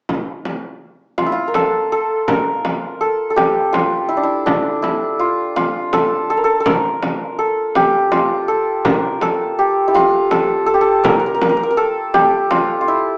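Festive and warm, this fragment of a Persian modal ensemble piece in 6/8 opens with a deep, large frame drum at 0.1 seconds before an up-front santur enters at 1.2 seconds, its bright, shimmering, hammered tone ringing out in the melody until 13.2 seconds, heard through a moderate studio reverb with a small-speaker sound.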